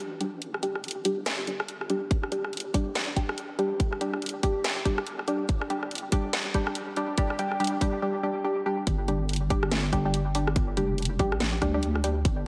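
A lush hall reverb with a digital ambience surrounds this cavernous, meditative excerpt of deep dubstep, which moves with a swung, half-time feel. Muted, detuned sawtooth chord stabs with a mellow filter pluck sit up front, carrying chorus and dub echo and a filter sweep through the build-up, while a dark, compressed triangle-and-sine wobble bass with chorus sustains underneath. A tape-warm garage kit of hi-hat, rim click and cracking snare plays from the start, joined at 2.1 seconds by a tight, layered electronic kick, before the drop lands at 8.9 seconds.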